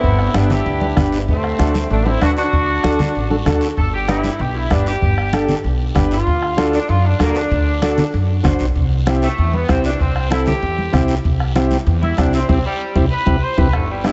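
A clear, vintage saxophone section carries the melody of this festive, danceable cumbia and takes a solo from 3.8 s, joined at first by a punchy, bright trombone that stops at 3.4 s, over a woody, growly upright bass up front, a soft-beaten bombo, damped congas, a raspy guiro and a mellow combo organ, with a band accent near the end and plate reverb placing the group further back in the room.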